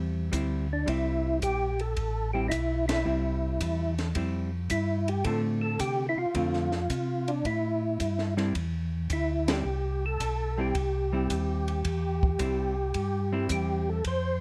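Smoky and soulful, this short cut from a longer soul jazz organ trio piece swings at 109 BPM in 4/4 in A minor, moving from Am7 to Dm7 at 5.3 seconds and back to Am7 at 7.4 seconds. A mellow tonewheel organ carries the bass line from the first moment, round and clean with chorus vibrato and a slow rotary speaker, sitting up front in the mix. From 0.7 seconds a second, percussive tonewheel organ takes the melody in its middle register, its third-harmonic percussion giving each note a percussive click over the same dark, vibrato-laden rotary tone. A hollow-body jazz guitar adds fingered, clean, shadowy accompaniment, while a compact cocktail drum kit, smooth and rolled-off on top, with a high-tuned snare and punchy kick, keeps time on hi-hat and ride. The whole band hits accents together at 2.8 and 9.4 seconds, and close, detailed microphones with light reverb keep the small-room sound intimate.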